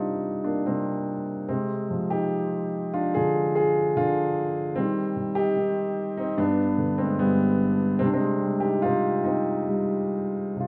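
A dark, mellow baby grand piano opens alone and carries this melancholic classical fragment, a lyrical solo in C minor at 73 BPM in 4/4 with a free, rubato feel. Its vintage, up-front tone rings with long sustain in the low and middle register, moving from Cm7 through Dm7b5, Eb and G before settling on Cm at 8.0 seconds. A moderate recital hall reverb surrounds the playing for the full 10.7 seconds.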